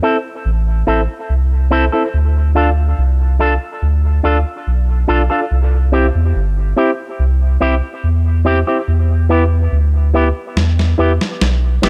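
Meditative and heavy, this dub reggae piece moves at an unhurried 71 BPM in A minor, cut from a longer work and cycling through Am, Dm, C and Em. A deep, round sub bass sits up front from 0.5 seconds, soft and sustained beneath everything with a fast attack. A bright, twangy electric guitar with an envelope filter plays clean, picked accompaniment carrying dub echo. A reedy electric piano adds lightly overdriven stabs through its built-in speakers, also trailing dub echo. At 10.6 seconds a gritty, pitched-down electronic snare arrives up front for a compressed, tape-tinged drum fill, all set in a light reverb.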